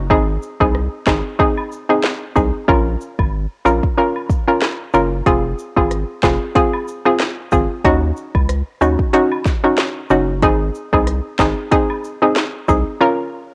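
A round, dark analog bass opens this bouncy, sultry dancehall groove at 93 BPM with a light swing, soon joined by a hollow, nasal square-wave pluck with chorus and cassette-tape grit up front, an electronic afro-pop kit with a deep kick, sharp snare, smooth hats, rim clicks and handclaps also carrying tape color, and a woodblock and cabasa in the background, all cycling through Ab, Bbm, Fm and Ebm7 in a homespun cassette recording with light reverb that is cut from a longer piece.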